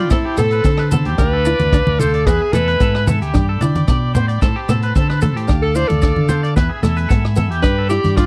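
A straight 4/4 groove at 112 BPM, built from a punchy vintage drum kit of kick, hi-hat and rim click, low-tuned hard-hand congas, grainy maracas in the background and a round fingered electric bass, drives this bittersweet A minor highlife guitar band excerpt over a repeating Amadd9, Dm, E and G cycle, while a breathy, up-front alto saxophone solos with vibrato above twangy, slightly broken-up electric guitar arpeggios carrying harmonic tremolo and slapback echo, a woody, boxy fingerpicked parlour acoustic guitar, and a buzzy combo organ holding chords in the background, captured in a dry, close 1970s-style studio sound.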